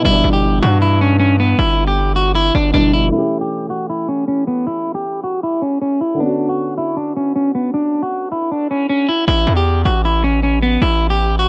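A slightly broken-up electric guitar with phaser carries the melody up front in this triumphant, dreamy trap excerpt at 156 BPM in a half-time feel, over a dark, mellow grand piano that stops at 9.3 s and a distorted, aggressive 808-style bass that drops out at 3.1 s and returns at 9.3 s, all in a dry, gritty small-room recording with a filter sweep through the middle.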